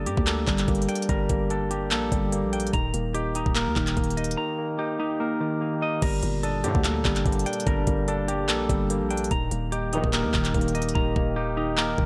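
A half-time trap groove at 146 BPM in 4/4 drives this eerie, brooding hip hop excerpt in G minor, with an overdriven trap kit sitting up front: a knocking kick, crisp hi-hats, handclaps and crash cymbal, the hats dropping out near the close at 11.0 seconds. Beneath it, a growling 808-style bass gives a buzzy, fast-attacking low end that decays between notes. A barky tine electric piano, lightly overdriven through a combo amp, carries the accompaniment, while a bright, clean semi-hollow electric guitar picks compressed arpeggios through a delay. The harmony moves between Gmadd9 and Eb, and in the second half a very quiet, mellow brass section adds short stabs with light vibrato around 6.6 and 9.9 seconds. From 7.2 seconds a deep, detuned analog pad joins with slow-attack sustained chords, shaded by chorus and phaser, all set in a light reverb with a digital ambience.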